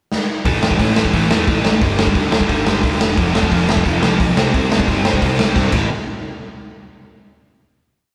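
The drums kick off with a fill at 0.1 seconds in a straight 4/4 at 176 BPM, settling into a two-step groove on crash cymbal, hi-hat, punchy kick and a medium-tuned snare, sounding gritty and saturated with a rolled-off top in a bright stone room. This is a short, aggressive and urgent punk rock piece in A minor, played live by a band in one room with light reverb. From 0.5 seconds a sludgy, overdriven, double-tracked guitar drives eighth-note power chords up front, moving through A5, G5, F5 and C5 before returning to A5. Underneath sits a picked electric bass with fuzz and overdrive, bright and direct, pushing driving eighth notes from further back in the mix. A second drum fill leads into the final hit, which lands at 5.9 seconds.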